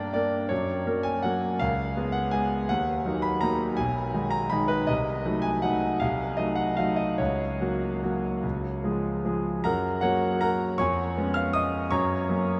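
Sparkling and graceful, this brief classical piano waltz in 3/4 moves with a rubato sway between 141 and 173 BPM in F# major, tuned slightly low at A4 = 437 Hz. A solo concert grand sits up front with a clear, smooth, vintage tone and deep bass, spanning B1 to E#6 as the harmony passes through C#7, D#m and a Cdim7 before settling back on F# at 11.9 seconds. A huge, wet reverb with a 7.5-second decay places the playing in a vast, echoing space, and a fresh section begins at 9.6 seconds in this 12.6-second cut from a longer piece.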